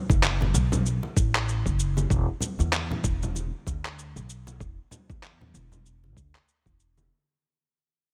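Meditative and earthy, this organic downtempo excerpt cut from a longer piece moves at 96 BPM in 4/4 with a 57% swing on the 16ths, as a dark, woody pizzicato upright bass with sidechain pumping sits up front beside a gritty, thumpy overdriven kick, compressed sampler-style shaker and handclaps carrying small room ambience, and ringing acoustic congas, all fading out across its 7.1 seconds.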